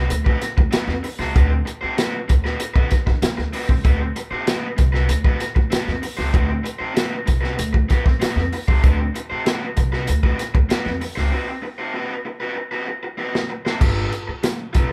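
Funk at 96 BPM in a gritty, playful mood, this short cut from a longer piece has a live band in one lightly reverberant room: a picked, overdriven garage guitar with spring reverb comps on D6 beside a woody pizzicato upright bass, while a dark, smooth, up-front swinging big-band kit with a punchy kick drives the groove until a break at 11.3 seconds brings a drum fill at 12.6 seconds before the harmony moves to G9 at 13.8 seconds.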